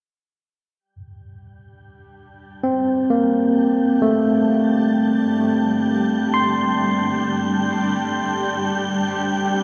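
Spacious and melancholic, this free-floating ambient fragment from a longer piece sets a barky, up-front tine electric piano playing arpeggios through a diffuse delay from 2.6 seconds while it gradually fades out, over a nasal, string-like bowed drone with vibrato that sits in the background from 2.2 seconds, a breathy, wind-like tuned noise texture, and a cloudy, detuned granular pad of sustained chords from 2.8 seconds, the three slow-attack layers fading in beneath a cavernous cathedral reverb.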